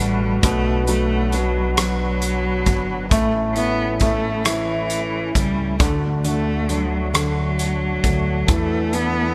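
A slow, straight 6/8 lilt at 45 BPM carries this heartfelt, tender pop ballad fragment in D major, where a focused, bowed cello with vibrato and delay sings the melody up front over a vintage grand piano with short sustain, a clean tonewheel organ holding chords with chorus vibrato and key click, a woody pizzicato upright bass, and a loose indie drum kit of punchy kick, hi-hat and rim click that enters at 0.4 seconds, the ensemble sitting in a small room with light reverb and a bright 1980s-style digital sheen as the harmony moves from Gmaj7/B through A and D to E7sus4.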